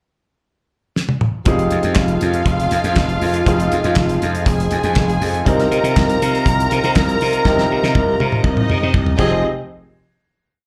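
A straight four-on-the-floor disco beat at 120 BPM in 4/4 kicks off with a drum fill at 1.0 seconds, the damped 70s kit pairing a tight kick and fat, clap-layered snare with sixteenth-note hi-hats, dark cymbals, crash and toms. At 1.5 seconds the full band drops into a danceable, glamorous groove in F minor, moving from Fm7 to Cm7. Up front, a growly, punchy slap bass plays an octave disco line with slides, while a lush string section, bowed with vibrato, carries long high lines touched by slapback echo. Behind them, a clear concert grand piano with audible action noise holds spread chords, also with slapback echo, and a distant French horn section sustains a warm pad. Another drum fill leads to a final hit at 9.4 seconds, and the whole piece sounds like a live gig heard through a club PA with light reverb.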